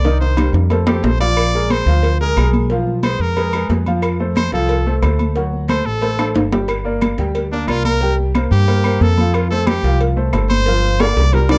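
Afro-Cuban jazz excerpt with a sunny, danceable mood, where a brilliant, forceful trumpet solos with vibrato over a dark, thumpy pizzicato upright bass up front, a clear grand piano with short sustain, high-tuned congas and tight vintage cowbell and bongos in the background, ringing metal-shelled timbales and agogo bells, and very quiet, distant claves, all in a dry, close 1970s-style studio sound with drum fills near 0.0, 6.2 and 11.0 seconds.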